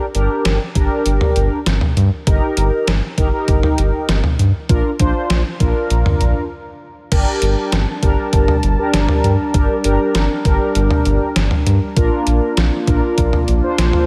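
A detuned 8-bit digital drum machine sets a straight 4/4 groove at 99 BPM, its thumpy kick and medium-tuned snare sitting up front with gated reverb, while a deep, dark analog bass with a fast attack holds down the low end in this upbeat, nostalgic synth-pop excerpt in Bb major. Mellow synth brass, ring-modulated with vibrato, chorus and a filter sweep, carries the accompaniment through chords moving from Gm to Eb/G and Bb. After a short break at 6.5 seconds, an airy, bold, detuned analog pad with a noise layer and soft attack enters at 7.1 seconds to sustain a Gmadd9 before returning to Bb, all within a light reverb.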